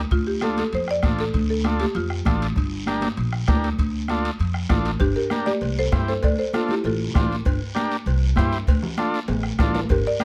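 Fiery, danceable cumbia in D minor at a brisk 196 BPM in straight 4/4, taken from a longer piece. A buzzing marimba played with medium hard mallets carries the melody in short, dry, close-miked phrases, up front and full in tone, with its second phrase arriving at 5.0 seconds as the music moves into a new section. Beneath it, a pizzicato upright bass with steel strings sounds woody and present, while a vintage combo organ supplies buzzy, clean accompaniment with heavy vibrato. The percussion is dense: a soft-beaten bombo, raspy guiro, ringing metal-shell timbales with cowbell, and high-tuned, band-limited congas, with a drum fill at 9.3 seconds. Light reverb and detailed microphones keep the mix close and lively as the chords cycle through Dm, Gm and C.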